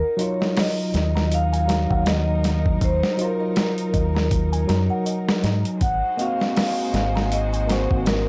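A ringing vibraphone melody with slow motor vibrato opens this smoky, melancholic trip hop excerpt at 80 BPM in Eb dorian over veiled, con sordino violin chords, joined at 0.2 seconds by a clean tine electric piano with tremolo, delicate music box arpeggios with 12-bit grit and tape echo in the background, and a compressed, up-front sampler-style drum kit with a thumpy kick, before a round, punchy dub bass with transformer saturation arrives at 0.9 seconds, and the chords later move from Ebmadd9 to Ab7 at 5.8 seconds in a dry recording dusted with vinyl crackle.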